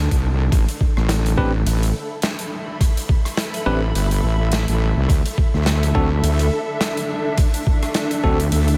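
Swung sixteenths give this gritty, swaggering glitch hop excerpt its strut, with an overdriven, thumpy electronic kick sitting up front over an acoustic arena kit of hi-hat, rim click and medium-tuned snare that pumps in a hall-like space. A heavy, saturated wobble bass with chorus carries the low end beneath a cloudy, detuned granular pad that pumps under sidechain compression in its own reverb. From 1.4 seconds a bright, bell-like tine electric piano adds clean stabs through tape echo, and the whole mix sits in a small room.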